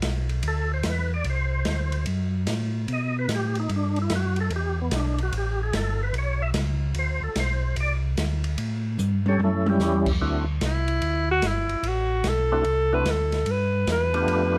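A swinging soul jazz organ trio groove in 4/4 at 148 BPM, with eighth notes swung, sits in D mixolydian with a greasy mood in this short cut from a longer piece. An acoustic jazz kit with dark cymbals, a medium-tuned snare and a boomy kick plays throughout from a small room, its top rolled off, and adds a drum fill between 9.0 and 9.8 seconds. A mellow, round tonewheel organ carries the bass line from the start, clean and up front with chorus vibrato and a slow rotary speaker. A second tonewheel organ takes the lead from 0.5 seconds with a fat, lightly overdriven tone, key click and second-harmonic percussion, also turning through a slow rotary speaker with chorus vibrato, over chords such as Cmaj13, Baug7 and A7. At 10.2 seconds the alto saxophone solo begins, the horn entering at 10.7 seconds with a clear, vintage jazz sound, light vibrato, subtone, a soft attack and scooped notes. The close, detailed recording has little reverb, keeping each part present and intimate.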